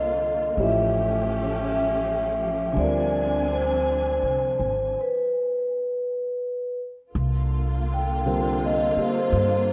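Melancholic and wistful, this slow 55 BPM swung jazz ballad fragment sets a mellow, ringing soft-mallet vibraphone melody up front over dark grand piano accompaniment, a woody, thumpy pizzicato upright bass and a distant, lush bowed string section with expressive vibrato and portamento, all steeped in wet plate reverb in a rough home-demo mix, before a stop at 5.0 seconds gives way to a vibraphone solo from 7.1 seconds.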